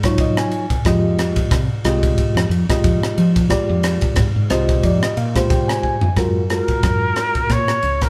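Slick and funky, this short cut from a longer electric jazz fusion piece rides a 4/4 groove with a swung sixteenth-note feel, played live by a band sharing one stone room with moderate reverb. A reedy, clean electric piano carries the accompaniment with a harmonic tremolo, heard through its built-in speakers, and adds fills as the chords move from Ebm9 to Fm9 and later Gbmaj9. Underneath, a woody fretless electric bass sounds dark, round and punchy, amped and direct with a hollow-body tone. The acoustic drum kit is airy, polished and up front, with a punchy kick, dark ride cymbal, rim clicks and toms, and it plays a fill at 5.8 s that leads into a new section. A trumpet with vibrato, a soft attack and a smooth top enters at 6.5 s for a brief jazz-style solo line, and the electric piano drops out at 7.5 s.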